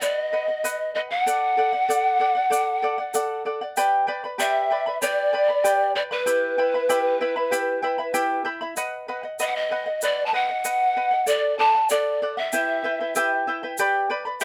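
A breathy bamboo pan flute carries the melody up front, its hollow tone marked by a crisp, chiffy attack, vibrato and rolled-off highs. This earthy, melancholic Andean folk piece moves at 96 BPM in a straight 4/4, tuned to A4 = 441 Hz. Beneath it, a fingerpicked acoustic charango sits close in the mix with shimmering double strings, some doubled at the octave. A large wooden quena traces a second line in the same register as the pan flute, pure and mellow in straight, tongued tone, very quiet and distant. A grainy, bright tube shaker adds percussion with a small-room character. All four parts play throughout the 14.4 seconds of this excerpt cut from a longer piece, under light reverb and close, detailed microphones, as the chords move through B, D, G and Em before settling on G at 13.8 seconds.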